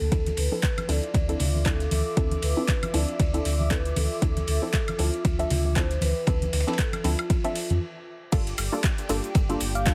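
An overdriven, up-front electronic kick anchors this late-night, moody deep house excerpt at 117 BPM with a swung 16th-note feel, joined by a layered kit of metallic hats, cabasa, handclaps, woodblock and crash, a muffled lo-fi soul kit's ride and snare, low-tuned congas ringing in the background, and a deep sine sub bass pumping under a muted, detuned dub chord stab with phaser and delay. A mellow soft-mallet vibraphone carries the melody through dub echo until 7.8 seconds, over a warbling, nostalgic tape-like pad on Dm9. After a short break, the drop at 8.3 seconds shifts to Gm9 and brings in an airy, breathy pad, with a round, tine-like thumb-piano pluck touching in at the very end, all inside a small room and a heavily compressed radio-style sound.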